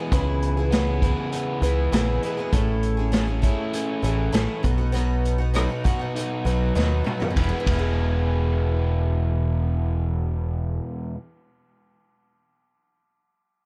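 A picked twelve-string acoustic guitar, shimmering and octave-doubled, opens this hopeful folk rock and heartland rock passage alongside a crunchy, double-tracked overdriven electric guitar playing a riff. Almost at once a deep electric bass sits up front with a round, punchy, dark tone, while a vintage acoustic drum kit sounds distant and roomy, with a tight kick, a medium-tuned snare and a rolled-off top. In a straight four, the harmony moves through C#m7, Amaj7 and B, and after a drum fill it settles on E as a new section begins at 7.4 seconds. The drums stop at 7.8 seconds, leaving the guitars and bass sounding in a small room ambience; the bass drops out at 10.8 seconds, and the guitars carry on until the piece is cut off at 11.3 seconds.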